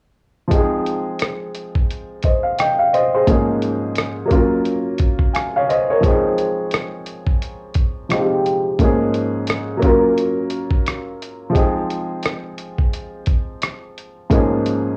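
Dreamy and nostalgic, this lo-fi hip hop excerpt pairs a dark, woody upright piano, run through cassette tape and a low-pass filter and softened with plate reverb, with an up-front, compressed sampler-style drum kit of thumpy kick, hi-hat and rim click swinging on the sixteenths, as the chords cycle from Ab6 through Db69/Ab to Gbmaj7 in a homespun cassette recording with moderate room ambience.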